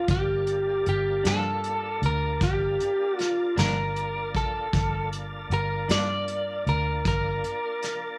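A lightly driven lead guitar carries the melody of this smoky, mournful slow blues in a straight 12/8 pulse, its dark, slightly broken-up picked tone sitting up front over a lingering minor seventh chord. Beneath it, a tonewheel organ holds smooth, clean sustained chords colored by a slow rotary speaker and chorus vibrato, resting well back in the mix. A vintage muted fingered electric bass supplies a round, foam-muted low end that stays close and punchy, while a vintage brush drum kit with a medium-tuned snare and a thumping kick keeps time from a small room, its top end rolled off. At 1.2 seconds a second electric guitar through a small old amp adds lo-fi, fingered accompaniment with tremolo, dropping out at 6.1 seconds. The sound is dry and intimate, and this short fragment is cut from a longer piece.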